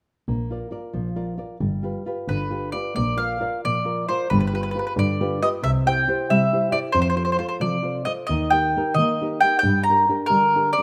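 The picked mandolin carries the melody, its double strings giving a mellow, round voice that sits up front and louder than the other parts once it enters at 2.3 seconds. This lively, romantic Italian folk serenade moves at 90 BPM in a straight 6/8, counted in dotted quarters, in Bb major and tuned to A4 = 442 Hz. From 0.3 seconds a classical nylon-string guitar, thumb-plucked on old strings, lays down a dark, woody accompaniment, also up front. Beneath it, a single muted double bass is bowed con sordino, close and veiled, with vibrato. The harmony moves from Bb to G7, and at 3.0 seconds a second passage travels through Bb, G7, C, F and Eb before settling on Gm. Light reverb surrounds this excerpt, which is cut from a longer piece.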